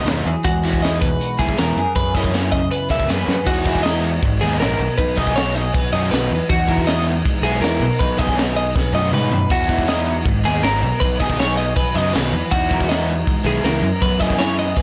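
A crisp fusion drum kit with a high-tuned snare, punchy kick and gritty, pumping small-room sound sits up front in this bright, intricate math rock and midwest emo excerpt at 159 BPM in B major, marking fills at 3.3 and 8.8 seconds beneath twangy, compressed twelve-string electric guitar arpeggios with plate reverb, a double-tracked crunchy overdriven guitar riff, a growling overdriven fingered bass, and a warm clean electric guitar with chorus and plate reverb tucked in the background, all in a blown-out recording moving through chords such as Emaj9, G#m9 and F#9sus4.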